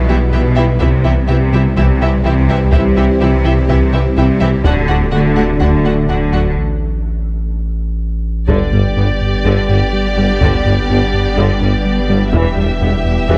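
A thick, saturated sub bass anchors this vast, brooding hybrid film cue, joined by a round analog bass riff in the background and a bowed cello and double bass foundation, the cellos expressive with portamento. Above them, a lush string body takes shape: a soft-attack violin section carries a second line while violas supply background accompaniment. Mellow French horns, a dark, distant trombone section and a cloudy granular pad hold sustained chords, and a tight, detuned sequenced synth drives quiet arpeggios. A heavy-stick taiko ensemble in a small room sits low in the mix from 0.8 seconds, and a break arrives at 6.6 seconds. At 8.5 seconds, a rich, vibrato-laden violin melody enters, and a solo tuba adds weight in the bass. The sound is close and detailed with light reverb, in a passage cut from a longer piece.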